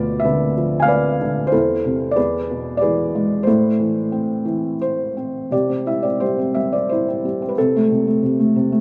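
Swaying in an uneven, rubato 3/4 at about 89 BPM, this warm and hopeful classical passage, cut from a longer piece, features a soft, intimate felt-muted upright piano with a short sustain, playing alone from its low register up to its upper middle, moving from A harmonic minor into C major at 5.5 seconds, wrapped in a moderate plate reverb.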